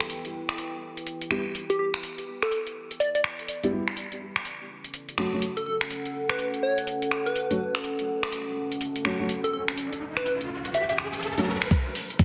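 Bass house at 124 BPM with a swung sixteenth-note feel, this bouncy, swaggering passage moves from E minor to F sharp minor before landing on an E power chord. A garage drum kit of finger snaps and metallic hats runs throughout, up front and overdriven, with soft clipping on the snare, while a deep, moody pad built from sawtooth, sine and triangle layers with a sub octave, wave-folding and ring modulation pumps beneath, treated with chorus and its own reverb. From 1.3 seconds a dark, boxy concert grand plays stabs through a low-pass filter sweep, sidechain pumping and digital delay, and from 1.7 seconds a catchy, punchy unison lead of detuned square and sine waves with a noise layer and a moving notch carries the melody through its own delay. Electronic sound effects mark the opening with a downlifter and build from 8.6 seconds with a riser, until an overdriven, knocking electronic kick arrives at 11.7 seconds. 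The dense, heavily limited modern master sits in a moderate plate reverb, and the clip is cut from a longer piece.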